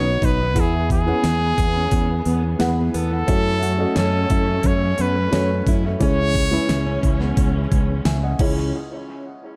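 An echo-heavy mix with light small-room reverb frames this bittersweet, driving piano-driven pop excerpt, where a soft felt-muted upright piano with audible action noise and a clear solo trumpet melody, both trailing dub echo, sit over a round fingered electric bass, a produced pop drum kit with knocking kick, fat snare and crisp hats, a fingerpicked jumbo acoustic guitar riff carrying its own dub echo in the background, and very quiet, dark, lush bowed strings holding sustained chords.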